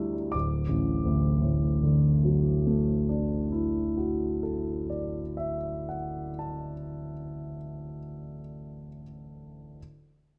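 Dreamy and luminous, this impressionist classical solo piano piece drifts in D major at a slow 33 BPM in 4/4, played with a free rubato feel and tuned to A4 = 442 Hz. A warm concert grand, placed up front with a deep bass, spans from D1 to E6 and plays throughout the 9.8 seconds, opening on a Dadd9 chord at 0.3 seconds. Close, detailed microphones catch the instrument within a moderate recital hall reverb, and this brief fragment is cut from a longer piece.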